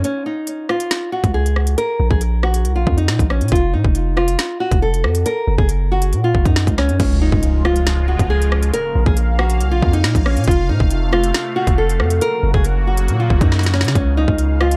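Menacing and cold, this half-time drill cut from a longer hip hop piece centres on a small, fingerpicked nylon-string guitar melody, up front and trailed by tape echo. Beneath it, a long sustained 808-style bass with a deep sine tone and fast attack decays, while an electronic drill kit pairs a hard-clipped kick and woody snare with crisp hats, rim clicks and crash. The track opens on a brief break before the beat settles in. At 7.0 seconds a background impact lands as a sweeping resonant pad enters, its detuned sawtooth body and airy noise layer opening through a filter swell with a slow attack, chorus and a long release. A drum fill arrives near the end, and at 14.2 seconds a gliding portamento lead slips in faintly behind the mix, carrying vibrato along with chorus and tape echo in a dry, echo-heavy sound.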